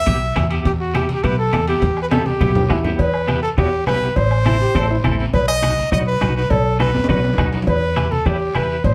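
Heard from further back in a lively, reverberant room, this passionate, danceable cumbia clip moves at a brisk 205 BPM in 4/4 with a straight feel, set in E harmonic minor. A clear, close-miked trumpet carries the melody up front from the opening moment, its light vibrato bathed in plate reverb, while a twangy, compressed clean electric guitar picks out accompaniment under a tremolo effect. Underneath, a woody, growly upright bass is plucked with steel strings, and the percussion bed combines a soft-beatered bombo, ringing metal-shelled timbales and cowbell, thick-skinned low-tuned congas struck with hard hands, and a raspy, band-limited guiro tucked deep in the background. A bright, punchy trombone adds a vibrato-laden second line between 2.6 and 5.2 seconds, bridging into the second section that begins at 3.0 seconds. Drum fills mark the turns as the harmony moves from Em through Am and B before settling back on Em, and the passage is cut from a longer piece.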